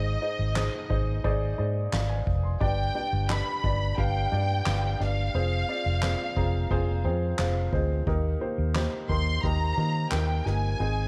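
A straight 4/4 pulse at 88 BPM carries this anthemic, uplifting piano-driven pop passage in Eb major, cut from a longer piece. A woody, slightly detuned upright piano sits up front as accompaniment, moving through Ab, G, Fm and Eb, and steps forward with a fill at 6.0 seconds. Beneath it, a dark, foam-muted fingered electric bass gives a round, punchy low end, colored by vintage transformer saturation and placed close in the mix. A soft-mallet drum kit enters at 0.6 seconds with a boomy kick, fat snare and handclaps, sounding acoustic and set in a big room, and drops out just before the end. Over the top, a lush studio violin section carries the melody with smooth, even bowing and vibrato, while the overall sound stays dry and close, with little reverb.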